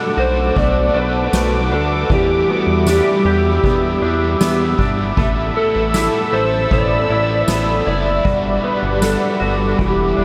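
Soaked in a huge, wet reverb with a 7.8-second tail, this hazy, melancholic dream pop excerpt drifts at 78 BPM in E minor, moving through Bm7, Em7, Asus2 and Gmaj7. A slightly broken-up electric slide guitar carries the melody through analog chorus and diffuse ambient delay. Beneath it sit a dark, double-tracked overdriven guitar with harmonic tremolo, a swirling phased analog pad of detuned sawtooth chords, and bright, clean arpeggios from a semi-hollow guitar set in the background, while a glossy, up-front chorused synth bass enters at 0.2 seconds and a soft-mallet drum kit with boomy kick, dark ride cymbal, snare and tambourine joins at 0.6 seconds.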